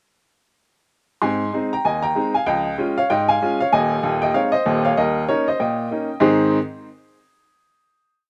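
A bright upright piano enters at 1.2 s with a cheerful, lively ragtime tune in thirds over a stride bass, at 96 BPM in 2/4 with a swung feel in Ab major. The woody, intimate tone sits up front with long sustain and audible action noise, moving through Ab, Db and Eb7 before settling on a final Ab chord at 6.2 s. The dry, open-air sound gives this short complete piece a close, direct presence.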